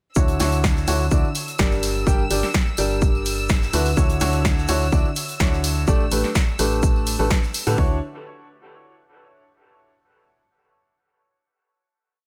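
A punchy, up-front electronic kick drives a straight four-on-the-floor pulse, joined by an analog drum machine's programmed open hats and backbeat snare from 0.4 s, a very quiet looped breakbeat with edits from a big-room rock kit, and a faint tambourine, all in a euphoric, feel-good piano house groove. A clear, woody upright piano plays a rhythmic close-voiced chord riff through a low-pass filter and dub echo, while a hollow, organ-like FM bass follows the chord rhythm and a background chamber violin section holds a soft, lightly vibrato high note; piano, bass and violins all pump with the kick. The groove gives way at 7.8 s to a final chord in a studio reverb.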